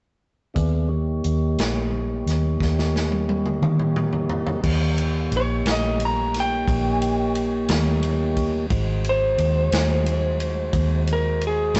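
Rolling in a straight 12/8 at 59 BPM, this soulful, rollicking slow blues in Eb mixolydian opens on Eb7 as a flute-like tonewheel organ holds sustained chords through a slow rotary speaker, joined by a round, foam-muted electric bass up front and a punchy, airy big-band drum kit that plays a fill from 2.6 to 4.6 seconds. At 5.4 seconds a dark, slightly broken-up lead guitar enters with a compressed, picked solo, and the harmony moves to Ab7 at 8.7 seconds. The rough rehearsal-room recording has light reverb, saturation and a dulled top end, and it is cut from a longer piece.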